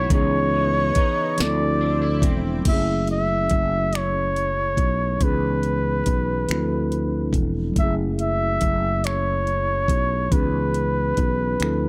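Rolling in a slow six-eight at 47 BPM counted in dotted quarters with a straight feel, this yearning, late-night R&B fragment in F# minor is cut from a longer piece. The produced electronic drum kit sits up front with a knocking kick, sharp snare, metallic hi-hats, finger snaps and a crash cymbal, while a growly fretless electric bass sustains low beneath it. A mellow, clean tine electric piano carries the accompaniment through chords such as C#m9, Dm9 and F#m9. Over the top, a flugelhorn sings the melody in a jazz style, its soft attack, vibrato and scooped notes bathed in plate reverb. For the opening 2.7 seconds, a twangy, slightly broken-up electric guitar adds a compressed, picked second line drenched in lush chorus, and a bright, detuned unison pad with a slow attack, chorus and phaser glows in the background before both fall away as the second section begins. The whole mix is lightly reverberant.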